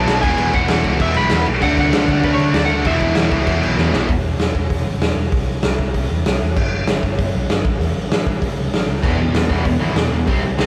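A straight 4/4 punk rock pulse, cut from a longer piece, drives an upbeat, rebellious mood as an up-front raw garage drum kit with a punchy kick and medium-tuned snare backs a growly, overdriven picked bass, while three bright distorted rhythm guitars (one compressed, one tight, one double-tracked and high-gain) play riffs in the background under a dark, slightly broken-up lead guitar melody that ends at 3.7 s, and after a drum fill at 3.8 s the riff guitars fall away until two of them return at 9.0 s, all captured in a rough rehearsal-room recording with light reverb.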